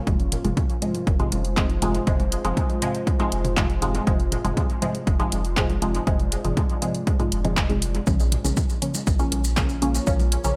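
Dub techno at 120 BPM in a straight 4/4, this short cut from a longer piece feels cavernous and nocturnal, moving from F minor to B-flat minor at 8.1 seconds. A punchy, overdriven electronic kick anchors the groove alongside a deep house kit of handclaps and hi-hat, both carrying studio reverb, while a smooth, clean sine sub bass pumps underneath. Up front, a muted, detuned sawtooth chord stab with a filter pluck and short decay is colored by chorus, phaser and dub echo, and it also pumps to the sidechain. Behind it, a moody, wave-folded pad with ring modulation, slow attack and long release sustains chords through chorus and built-in reverb. Very quiet, tape-warm electronic congas and toms sit low in the mix, and grainy, distant maracas join at 8.1 seconds, heard in a large room.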